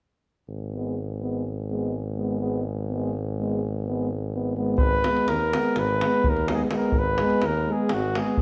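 A short Balkan brass band passage in 9/8, cut from a longer piece, moves at 251 BPM counted in eighths with a straight feel in A-flat minor, its mood both bittersweet and fiery. A clear tuba holds the bass up front from 0.5 seconds, ranging from Ab1 to Eb2 over an A-flat minor chord. Two euphoniums join almost at once as accompaniment: one clear with vibrato, sitting in the background on Cb4, and the other mellow with light vibrato and a smooth top, holding Ab3. At 4.8 seconds the music shifts into a new section as a mellow flugelhorn takes the melody up front, moving between Gb4 and Cb5, while a tight, compressed and saturated davul enters up front. The brass parts are all played in a classical style, and a moderate recital hall reverb gives the group a sense of space.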